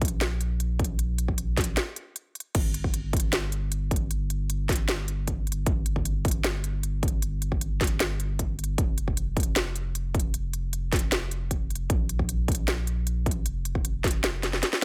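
Future bass in G minor at 154 BPM with a half-time feel, lush and bittersweet, tuned slightly sharp to A4 = 445 Hz and cut from a longer piece. A deep, thick, saturated sub bass sits up front with sidechain pumping, under a punchy, layered electronic kick re-recorded in a small room and a trap kit of sharp snare, crisp hi-hats and crash cymbal, all set in a digital ambience. A brief break arrives at 1.8 seconds, and a drum fill at 14.4 seconds closes the passage.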